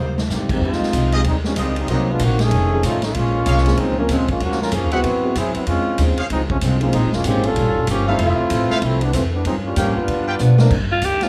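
Sultry and dramatic, this big band swing excerpt is driven by a thumpy, woody pizzicato upright bass, a punchy swinging drum kit and a dark, mellow grand piano in the background, with a very quiet picked acoustic guitar beneath. The up-front trombone section takes a smooth, tight solo from 0.6 seconds over shifting minor and altered chords, framed by drum fills and punctuated by clear, soft-edged trumpet stabs. At 10.9 seconds a raspy, growling alto saxophone steps forward with scooped notes just as the cut ends.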